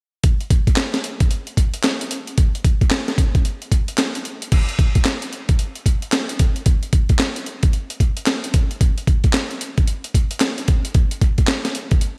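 A swung sixteenth-note groove in 4/4 drives this flirty, upbeat R&B excerpt, where a sampler-style breakbeat kit sits up front, compressed, pitched up and gritty, with a thumpy kick, high-tuned snare, handclaps, hi-hat and crash cymbal, all carrying a tape warmth and light reverb, moving from its opening section into a second one at 4.5 seconds.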